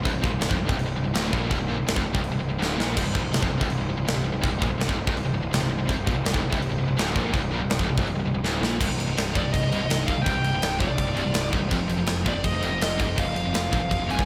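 A straight, driving 4/4 pulse anchors this epic, relentless heavy metal fragment, cut from a longer piece, with a tight acoustic drum kit up front: punchy kick, medium-tuned snare, and glittering crash and china cymbals, plus fills at 2.6 and 8.4 seconds. Beneath it, a growly picked electric bass with fuzzy overdrive underpins the low riffs of three guitars: a warm, double-tracked overdriven guitar and two crisp, picked distorted guitars, one with added distortion, all kept low in the mix. A very quiet brassy analog pad holds sustained chords throughout, its detuned sawtooth tone softened by a gentle attack, chorus, vibrato and a filter sweep. At 9.4 seconds a dark, high-gain lead guitar with delay enters on a high melody, lifting the second section. A lush hall reverb gives the whole mix a big arena sound.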